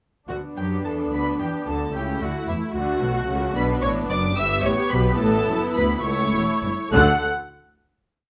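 Moderate studio reverb surrounds this short, complete classical-period movement for muted string orchestra, cheerful and spirited in D major, moving in 6/8 at 66-75 BPM in dotted quarters with a rubato feel. Veiled, lush violins carry the melody from 0.3 s while a second violin section doubles the tune at the octave, and the dark viola section, placed up front with a soft attack and smooth top, adds independent inner lines and sustained chords. Bowed cellos supply a walking, sustained bass, and the warm double basses double the bass line until 7.2 s, as the piece settles on a final D5 chord from 6.9 s.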